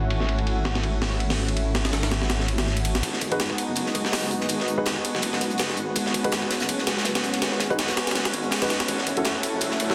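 Nostalgic and raw, this drum and bass excerpt with a jungle edge opens on a lush, warbling unison pad with vintage sampler grit over a thick, menacing detuned saw bass, while a gritty, up-front breakbeat kit with a thumpy kick drives through a filter sweep. At 3.0 seconds the build-up begins as a very quiet, rolled-off studio kit adds hi-hat and snare, and moments later a dark, mellow baby grand piano drops in background stabs soaked in dub echo. The chords shift from G#m7 to F#m7 near the end, and a faint electronic riser appears at 9.5 seconds, all set in a lush hall and a dense, heavily limited master.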